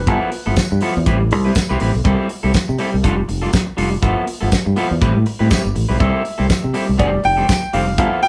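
A growly, punchy fingered electric bass sits up front in this glamorous, joyful disco cut from a longer piece, moving at 121 BPM in C major with a lightly swung sixteenth feel. Beside it are a twangy, slightly broken-up electric guitar at the edge of break-up and a damped 70s drum kit with a fat snare, tight kick, hi-hat and rolled-off top, while a jingly, band-limited tambourine sits in the background. A natural-sounding grand piano carries the melody, heard briefly until 0.8 seconds and again from 6.0 seconds, over chords cycling through G13, Am9, C6 and F69, with the band playing live together in a small, wet-sounding room.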